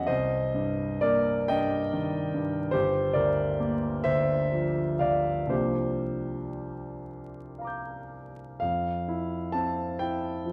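A slow, freely breathing 6/8 pulse drifts with rubato through this serene, hazy fragment of impressionist solo piano, cut from a longer piece. A clear concert grand plays alone and up front, its deep bass and natural tone spanning from G1 to G6 as the harmony glides from Cm7 through Gm7 to C9sus4 before settling on an open F5 at 8.6 seconds. Moderate recital hall reverb lends a gentle bloom, while a vinyl crackle adds a nostalgic grain to the sound.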